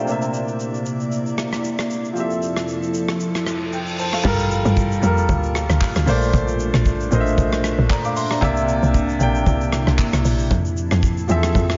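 Swung sixteenths drive this soulful, deep amapiano excerpt, where a warm, up-front grand piano accompanies a glassy, warbling FM pad with ensemble chorus and sidechain pumping that carries sustained chords over a dark, smooth acoustic kit of kick, rim click, hi-hat, shaker, handclaps and crash, until a background reverse cymbal and impact usher in the tight, punchy log drum bass at 4.2 s, the mix soaked in a dreamy hall reverb.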